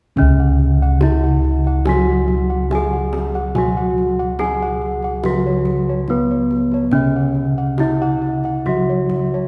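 Low bossed gongs carry a bright, dry, close-sounding bass line in this serene, ceremonial Javanese gamelan passage, cut from a longer piece, while a higher set of bossed gongs plays mellow, dark arpeggios struck with padded beaters. A bronze metallophone sounds the ringing melody under a wooden mallet, and a second metallophone, played with padded disc mallets, supplies a soft accompaniment whose paired tuning gives a shimmering beat. A tight, distant kendang plays from 0.2 to 9.3 seconds, and a long church reverb surrounds the ensemble.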